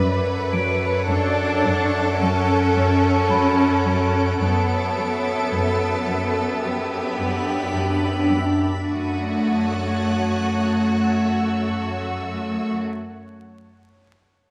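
This uneasy, eerie suspense cue opens with a clear, intense chamber violin section carrying the melody over a soft, organ-like pad with ensemble chorus and its own reverb, a bowed double bass section holding F#2, a rich cello section riff, and faint, lush studio violins high in the background, all at a slow 54 BPM in F# phrygian. A delicate, bell-like celesta joins at 0.5 s, and a smooth, distant cello section takes up a second bass line from 1.1 s. The rich cello riff stops at 8.6 s, just before the harmony returns to F#m at 8.9 s. A wet scoring-stage reverb and a layer of vinyl crackle give this short cut from a longer piece a haunted, dusty air.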